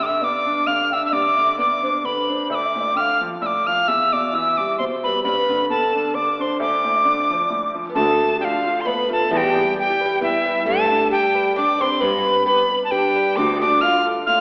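A lilting, swung three-beat Celtic waltz with a wild, spirited mood, this excerpt is led by a reedy, up-front whistle with chiff and vibrato. A mellow, hollow wooden flute carries a second line from a distance, over a brilliant upright piano accompaniment. At 7.9 seconds a plucked, woody oud joins with its double strings, and from 8.0 to 13.6 seconds a single distant bowed cello adds a focused bass line, all set in a lush church-like reverb with a thin AM radio colour.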